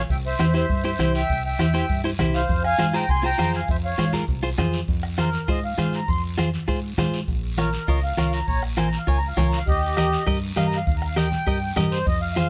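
A sweet, reedy accordion with light tremolo tuning sits up front in this danceable, passionate cumbia at 200 BPM, moving from F harmonic minor into F minor as it takes a solo at 4.9 s over chords of C, Fm, Bbm and Eb. Beneath it, a dark, round fingered electric bass anchors the low end, while a clean, picked electric guitar joins at 0.4 s with compressed accompaniment. A soft-beater bombo, low-tuned congas with thick skins and soft hands, and a raspy, saturated guiro drive the groove, all set in a wet studio reverb in this cut from a longer piece.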